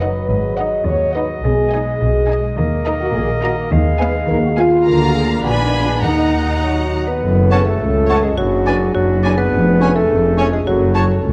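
A dark, warm orchestral sound in a moderate scoring-stage reverb opens this playful, whimsical film cue, cut from a longer piece, with a magical, sneaky mood in a straight 2/4. A studio violin section with soft-attack vibrato carries the melody over a second line shared by a clear solo clarinet and a rich chamber violin section, while a bassoon, a smooth, focused viola section and a concert harp's ringing fingerpicked arpeggios fill the accompaniment. A French horn section holds sustained chords above a bowed bass of cello section and an intense, distant double bass section. At 6.6 s a bright, woody marimba with hard mallets joins the melody, close-miked and dry, and as the harmony shifts at 7.2 s a present tuba adds weight to the bass. An airy silver flute and a roomy, distant oboe slip in at 7.5 s on a second line tucked into the background.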